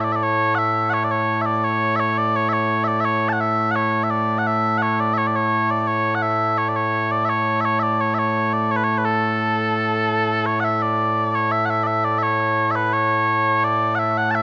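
A straight 2/4 pulse carries this proud, stirring slice of traditional Scottish pipe music, cut from a longer piece. Mellow small bagpipes play solo and up front from start to finish, their sweet, continuous tone colored with vibrato, and at 10.8 seconds the tune moves into a new section. A lush hall reverb surrounds the pipes, though the overall mix has the rough feel of a home demo.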